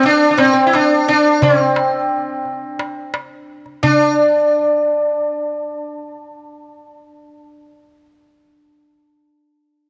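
A buzzing, shimmering sitar carries the passionate, stately melody up front while a woody, fretless oud plays a quieter second line in the background of this Turkish makam ensemble excerpt in 7/8 at 174 BPM (eighths), tuned to A4 = 443 Hz, with a crisp, close, dry metal-shelled darbuka joining at 0.4 s and dropping out at 4.2 s, shortly after a new section begins at 3.8 s, all set in a moderate plate reverb.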